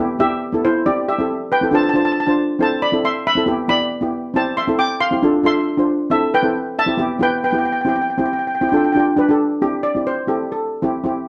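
A straight 4/4 calypso groove moves at 137 BPM in C major, giving this short cut from a longer piece a bouncy, festive mood. The lead steel pan carries the melody from E4 to D6, struck with hard rubber sticks for a metallic, shimmering tone that sits up front in a boxy small-room sound. Beneath it, a double seconds pan supplies accompaniment from B3 to C5, played with medium rubber sticks, mellow, soft and smooth, and slightly louder than the lead. The chords cycle through Em, C6, Dm7 and Am before turning through Dm and G to land on C at 9.6 seconds, where a steel pan solo runs to the close. Moderate studio reverb and a dark, warm production, capped at 10.9 kHz, round off the sound.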